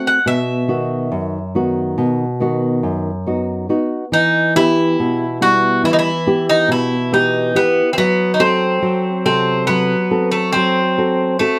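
Melancholic and reflective, this short excerpt of Greek folk music moves at 140 BPM in a straight 9/8 metre, set in E harmonic minor. A Greek bouzouki carries the melody from start to finish, its picked double strings giving a warm, metallic tone with some octave-doubled courses adding shimmer. Beneath it, a nylon-string guitar supplies the accompaniment, thumb-plucked in a classical manner with a dark, woody sound from old strings. Both instruments sit up front in a close, detailed recording with light reverb. The harmony moves from B to E minor at 4.1 seconds, where the second section begins, and then to F# diminished at 8.0 seconds, deepening the mournful character before the passage is cut off.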